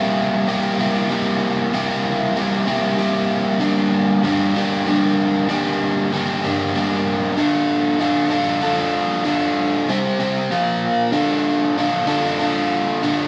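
Restless and cool, this rock fragment in 6/8 features an overdriven electric guitar playing a solo across its full 13.3 seconds, picked with a bright, compressed edge and double-tracked up front in the mix. Spring reverb colours the guitar while a wet studio reverb gives the live, single-room take its sense of space. The harmony moves from C7 to Gm and Dm, then passes quickly through C5 and Bb5 before settling back on Dm at 11.1 seconds.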